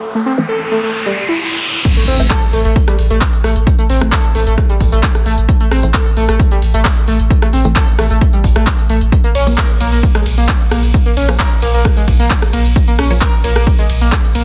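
Dense and heavily limited with light reverb, this cut from a longer driving peak-time techno track feels intense and hypnotic. It opens with an electronic riser as a screaming, gritty sawtooth lead riff, treated with distortion, chorus, digital delay and sidechain pumping, goes through a filter sweep over a dark, muted dub chord stab coloured by phaser, subtle chorus, delay and pumping. At 1.9 seconds the drop lands with an impact, bringing a punchy layered kick and a techno kit of smooth hi-hats, handclaps, rim clicks, ride and crash cymbals, both re-recorded in a small room, followed at 2.1 seconds by a round sine sub bass under a low-pass filter and sidechain pumping, while the bright, guitar-like lead keeps its vibrato and the detuned stabs sit in the background.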